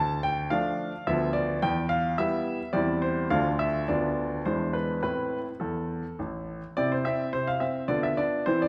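Serious and restless, this short excerpt of a classical-period piano sonatina in A minor moves in a straight 3/4 at 106 BPM, with a clear, intimate baby grand played solo and up front, its audible action noise adding a natural closeness against a lingering recital-hall reverb, as the harmony turns through diminished and dominant chords to settle on A minor before a brief new section opens on C at 6.8 seconds.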